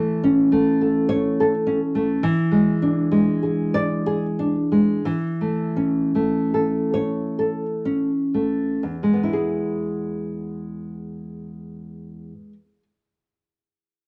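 Sunny and tender, this romantic solo classical guitar piece moves in an unhurried 3/4 with rubato phrasing, drifting between 40 and 72 BPM in E major with the tuning set slightly above standard at A4 = 441 Hz. The nylon-string guitar sits up front with an acoustic, thumb-plucked tone, ranging from E2 to D5 over chords of A/E, E7 and back to A/E, set in a wet club reverb. The playing slows from 0.9 s to 8.8 s, where a new passage arrives and settles onto E before this fragment of a longer work ends at 12.8 s.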